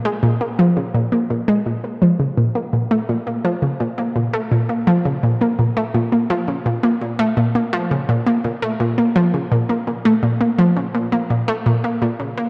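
A lone analog pluck, round and detuned with a bright, up-front edge, chorus and analog delay, plays between Bb2 and Bb3 from 0.1 s to 12.5 s in this expansive, hypnotic ambient passage at 84 BPM in Bb harmonic minor, cut from a longer piece and set in a moderate plate reverb within a dark, warm production.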